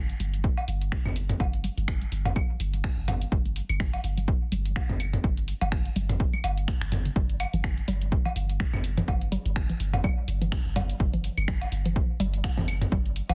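A swung 16th-note groove at 125 BPM in 4/4 drives this cool, clinical minimal techno clip, cut from a longer piece and tuned to A4 = 436 Hz. A dry, punchy electronic kick sits up front from 0.4 seconds, joined by a dry analog drum machine playing finger snaps and hi-hat, with soft clipping on its snare. A deep sine sub bass holds G1 from the very start, its pitch-drop attack and sustained tone pumping against the sidechain. Electronic woodblock, toms and claves add tape-warm percussion that sounds re-recorded in a small room. A hollow, bouncy square-wave pluck riff moves between D3 and Bb3 with a fast attack and short decay, coloured by chorus, phaser, tape echo and sidechain pumping, while a filter sweep runs across a synth arpeggio sound throughout. The mix carries a digital ambience and a dense, heavily limited modern master.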